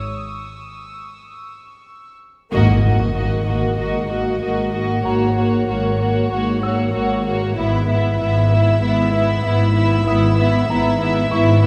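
Mysterious and tense, this cinematic passage, cut from a longer piece, moves at a steady, straight pulse in four. It opens on a brief break in which a polished baby grand piano sits in the background of the high register alongside a floating, sul tasto violin section texture. At 2.5 s the full string body arrives with a band accent and an electronic impact in the background, as a close violin section carries the soft-attack melody and a studio violin section adds a second line beneath it. A lush, woody viola section gives vibrato accompaniment, while a background cello section and an intimate double bass section with light vibrato hold the low end together. The high violin texture returns at 7.6 s as the harmony settles onto E over the G# in the bass. A wet scoring-stage reverb places the ensemble further back in the room, giving the strings a hushed, suspended air.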